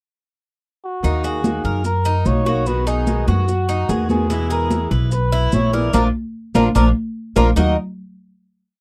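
Sultry and danceable, this short Cuban son and guajira piece moves at 147 BPM in Eb phrygian, opening with a cup-muted trumpet pickup at 0.8 seconds that carries a veiled, breathy jazz melody built from motifs, touched with light vibrato. At 1.0 seconds the band joins: a woody, thumpy upright bass up front plays a tumbao that anticipates the chords, a bright, metallic Cuban tres picks an arpeggiated guajeo on double strings, a boxy fingerpicked swing-style acoustic guitar adds strums with muted slaps, high-tuned congas ring with slaps and open strokes, and grainy maracas sit in the background. The dry, close 1970s-style studio sound with light reverb frames a band accent from 5.9 to 7.6 seconds before the piece settles on a final Ebm chord.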